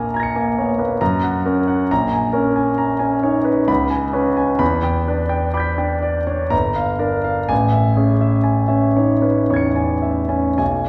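Luminous and hazy, this short fragment of impressionist solo piano drifts in a rubato 3/4, its pulse bending freely across about 10.9 seconds. A single concert grand carries everything, spanning G1 to C#7, with a deep bass, a polished, clear tone and long sustain, plus audible action noise that gives it an intimate, present quality. The harmony slides through colorful seventh chords, moving from A#m7 and F# through Em7 and Gm7 before settling on Amaj7 near 7.5 seconds. A wet recital hall reverb with a 1.5-second tail surrounds the instrument, and the listening position sits further back in the room, so the notes bloom into a soft, glowing haze.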